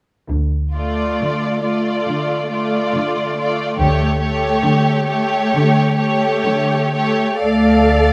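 Dark, woody cellos and a rich, up-front double bass section open together at 0.3 s on a D minor chord, setting a melancholic, yearning tone for this slow romantic string orchestra movement in a flexible, rubato 4/4. A second violin line enters at 0.7 s, smooth, even and somewhat distant. At 0.8 s the melody violins join with a soft attack and expressive, forward playing, while warm violas add a more distant inner accompaniment. Every section is bowed with vibrato, and the basses keep a smooth top to their sound beneath the close, dark cellos. A moderate scoring-stage reverb gives the ensemble a spacious studio glow in this short passage cut from a longer piece.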